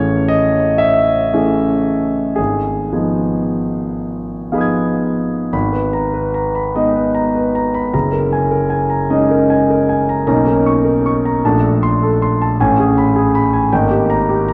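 A dark, reverberant concert hall surrounds a clear, natural-sounding grand piano that sits up front, its deep bass and long sustain blooming into a 2.5-second tail. This mysterious, hazy fragment of impressionist solo piano drifts in a rubato 6/8 at 36-53 BPM in G# minor, moving from Amaj7 to G#m6 before a new passage opens at 5.5 s on G#madd9. From there, the lush ninth chords gather and slip through Bmaj9, A#maj9 and Amaj9 toward a closing G#sus2 across a span from F#1 to G#6.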